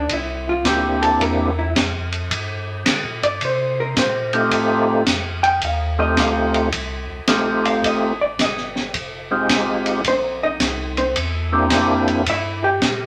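A moderate club reverb surrounds this greasy, bluesy soul jazz organ trio excerpt in a swung 4/4, where a clean, compressed hollow-body electric guitar solos up front throughout, a fat, percussive tonewheel organ with key click, light overdrive, chorus vibrato and slow rotary speaker carries the melody from 0.7 to 12.2 seconds, a piping, scooped tonewheel organ plays the bass line, and an open acoustic drum kit brings dark cymbals, a high-tuned snare and a boomy kick.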